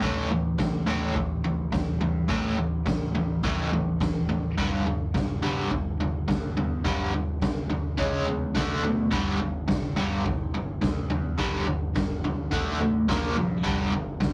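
Rowdy and swaggering, this 14.3-second excerpt from a longer garage rock piece struts along at 106 BPM in a straight 4/4, centred on A mixolydian, with a biting, double-tracked overdriven guitar up front hammering out a riff through tremolo over chords moving from A5 to G5, C#5, D5 and Bb5. A raw acoustic drum kit, gritty and saturated with a punchy kick, medium-tuned snare, toms and a rolled-off top in a bright stone room, sits up front beside it, while a growling picked electric bass, bright and overdriven, runs very quietly beneath. All three play throughout, captured in a rough rehearsal-room recording with moderate ambience and warm saturation.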